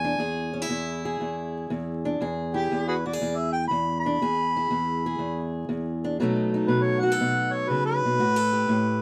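A loping swing feel at 120 BPM in 4/4 drives this short cut from a longer acoustic country blues in E major, rollicking yet soulful in mood. A mellow harmonica carries the melody throughout, its soft attack, scooped notes and tongue slaps giving it a jazzy, roomy character even as it sits up front. Alongside it, a fingerpicked steel-string acoustic guitar supplies the accompaniment with a boxy, parlour-sized tone, finger squeaks audible on the strings. The harmony rests on E before moving to B7 at 6.2 seconds and then to Gmaj9 at 8.2 seconds. Close, detailed microphones, light reverb and a bed of vinyl crackle give the duo an intimate, old-record feel.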